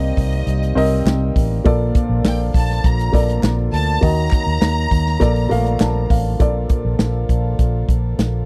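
A dry, close 1970s-style studio sound frames this uplifting, anthemic piano-driven pop fragment, where a dark, woody upright piano and a reedy, breathing pedal harmonium carry the Cm7, Bbmaj7 and Ebm changes, a round, foam-muted vintage electric bass and a punchy natural country drum kit sit up front, crisp group handclaps stay in the background, a lush, vibrato-rich violin section with slapback echo carries the melody until 6.1 seconds, and the piano adds a fill starting at 5.5 seconds.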